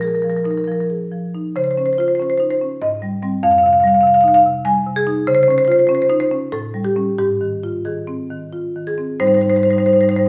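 A solo marimba played with medium hard mallets opens this fragment of a contemporary classical piece in Ab major, its woody, percussive padauk bars sounding up front and boxy as they span F2 to Ab5. The mood is warm and flowing, moving in a rubato 3/4 at roughly 87-99 BPM through rich harmonies such as Bb7sus4, Dbmaj9 and Fsus2, with a striking A7 before settling on Abmaj7 at 9.2 seconds. A wet stone-room reverb surrounds the instrument.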